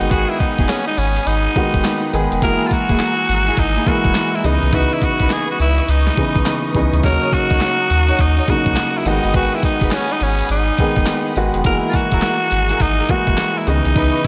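A crisp, overdriven 8-bit drum machine swings its 16ths at 104 BPM with thumpy kick, snare, handclaps, hi-hat and tambourine over a round, deep analog bass in this punchy, confident new jack swing R&B excerpt in G# minor, where a raspy, gritty tenor saxophone carries the melody up front and a polished grand piano accompanies, both with slapback echo, while veiled, muted string stabs, also echoed, and a rich, distant sustained string section sit in the background over G#m7, F#9, C#m9 and D#m7 chords inside a lush hall reverb that gives a big arena sound.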